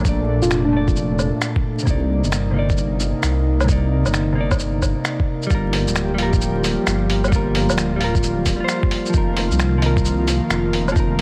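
Vinyl crackle and a light digital ambience frame this ghostly, rainy future garage passage, cut from a longer piece and set in a swung 4/4 groove. A dark detuned saw bass sits up front, deep and rumbling with a beating edge, while a muffled, pitched-down electronic kick thumps beneath it in studio reverb. A compressed lo-fi sampler-style kit adds finger snaps, hi-hat, shaker and woodblock with a tape-warm haze. A clean, fingered semi-hollow electric guitar plays the accompaniment, roughened by vintage 12-bit sampler grit and tape echo, as an airy, breathy pad holds slow-attack chords through chorus; the guitar, pad and bass all pump with sidechain compression. A round, keys-like FM lead appears only briefly in the background from 0.4 to 1.0 seconds, and the harmony moves from Bbmaj7 and Cm9 to Gm7 at 5.5 seconds and F7sus4 at 9.1 seconds.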